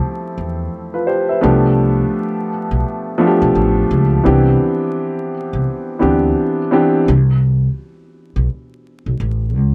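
A 61% swung 16th-note groove at 85 BPM in 4/4 carries this nostalgic hip hop fragment in C major, where a dark, mellow grand piano with audible action noise and a vintage cassette-tape, filtered tone plays up-front chords moving from Fmaj9 through G9 and Cmaj9 until 7.1 seconds, while a woody, growly pizzicato upright bass on steel strings enters at 0.4 seconds and carries on alone to the Amadd9 at the end, all in a dry, intimate sound dusted with vinyl crackle.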